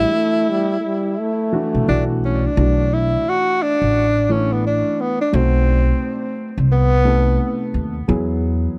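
A cool hip hop cut in B minor at 87 BPM with a swung 16th feel opens with tenor saxophone, trombone, dark concert grand piano and woody pizzicato upright bass together, the thumpy bass sitting up front. The subtone saxophone carries the melody with vibrato, scooped notes and tape echo, while the punchy, close-miked trombone plays a second line until 2.6 seconds, and the vintage-toned piano accompanies until 8.8 seconds. The dry, close 1970s-style studio sound has light reverb, and the piece is cut from a longer work.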